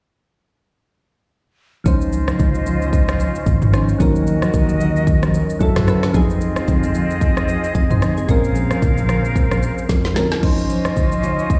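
Soft, round electric-piano-like synth keys with chorus and tremolo open this deep, hypnotic amapiano excerpt at 1.8 s, joined almost at once by pure, vibrato-rich flute section chords pumping under sidechain, a punchy fingered electric bass, up-front deep house drums with a deep kick, woody snare, rim clicks, shaker, toms and crash, and very quiet low-tuned congas, the mix played through a big sound system in a bare room with large studio reverb, while a drum fill arrives at 9.9 s and the bass stops at 10.3 s.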